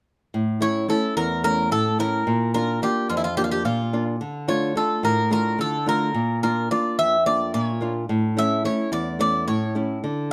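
Moody and bittersweet, this Greek folk piece for a bouzouki band moves in a straight 7/8 at 216 BPM counted in eighths, tuned to A4 = 438 Hz and circling through A, Bb, Dm, Bb and back to A. A small, fingerpicked nylon-string guitar starts the accompaniment at 0.3 seconds, and the metallic, double-strung Greek bouzouki enters with the picked melody at 0.6 seconds, some of its strings octave-doubled as it rings up front beside the guitar. Close, detailed microphones and light reverb keep both instruments intimate in this short passage cut from a longer piece.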